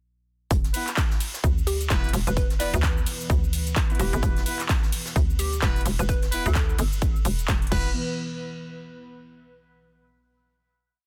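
Bass house at 129 BPM in E minor, gritty and aggressive, with a swung 16th feel and a drop that runs from 0.5 seconds until a final hit at 7.9 seconds over a dense, heavily limited master with studio reverb and a faint mains hum. A punchy four-on-the-floor electronic kick and a hollow, bouncy FM bass with tube saturation sit up front, chopping phrases that pump against the kick. Around them sit metallic programmed hats, clap, shaker, ride and crash; a very quiet brushed breakbeat loop with edits; a sawtooth pad with chorus that evolves slowly; and loose horn stabs with dub echo. From 1.7 seconds a detuned square-wave pluck carries the mellow melody.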